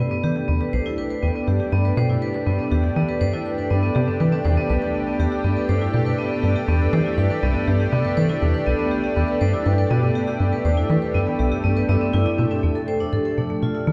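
A straight 4/4 pulse at 121 BPM drives this expansive, luminous stretch of ambient sequencer-driven space music in C major, where a punchy, saturated sawtooth sequencer bass riff with filter-plucked, decaying notes and analog chorus, 12-bit grit and tape echo sits up front beneath thick, detuned unison pad chords that warble through chorus, while a metallic, ringing vibraphone struck with hard mallets spins bright, airy arpeggios with fast motor vibrato and tape echo, all moving from Cmaj7 to F6 at 12.6 seconds inside a dark production bathed in a 2.4-second concert hall reverb.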